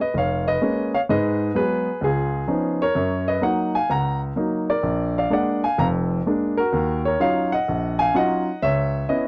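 A warm, present grand piano plays alone across this brief, moody solo jazz fragment, its polished, up-front tone ranging from deep bass to bright upper notes over a cool swung 4/4 and rich minor-key seventh and ninth chords, captured in a dry, close 1970s-style studio with light reverb.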